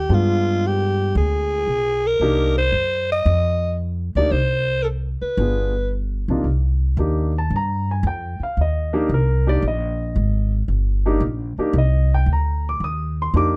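A growling alto saxophone carries the melody with a raspy subtone and scooped notes, playing up front in a cool, moody small-group swing and bop setting before dropping out at 5.9 seconds. Beneath it, a woody, thumpy pizzicato upright bass on gut strings and a warm grand piano accompanying through altered dominant and minor seventh chords carry on together to 13.6 seconds. The dry, dark production keeps every instrument close, and the clip is cut from a longer piece.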